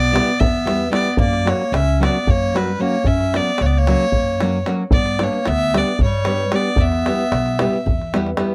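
A straight 7/8 pulse at 225 BPM, counted in eighths, drives this short passage of Balkan wedding-band folk, its mood bittersweet and restless. Up front, a single bowed fiddle with a reedy, gut-string tone carries the melody, while a clarinet, clear and classical in style with a soft attack and smooth top, plays a lower second line beneath it. A fingerpicked nylon-string guitar adds full-bodied accompaniment from 0.1 seconds, its finger squeak audible, as a woody, growly pizzicato upright bass anchors the low end. A deep davul sits in a small room sound and is the loudest part, running until 8.5 seconds. The harmony moves from Em to F#, then G at 4.9 seconds, and back to Em, all captured by close, detailed microphones with light reverb in this fragment cut from a longer piece.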